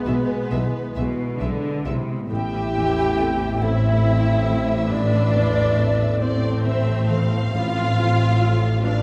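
Uplifting yet tender, this rubato cinematic film-score excerpt in 6/8 at 46 BPM carries a veiled, con sordino violin melody over muted violas, background violins, cellos and double basses, with an airy, hollow flute, sustained French horn chords, a felt-muted upright piano with audible action noise, and very quiet ringing harp arpeggios, all bathed in a wet scoring-stage reverb as the harmony moves from E/B to Am at 2.3 s and F/A at 7.5 s.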